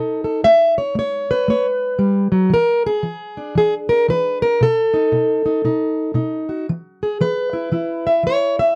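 A swung 4/4 groove at 115 BPM carries this gritty, swaggering acoustic country blues excerpt, where a lone fingerpicked, plugged-in steel-string acoustic guitar with a boxy parlour tone sits up front in a dry, close 1970s-style studio sound, moving through A7, E7 and B7 before taking a short solo over E5 from 6.7 seconds.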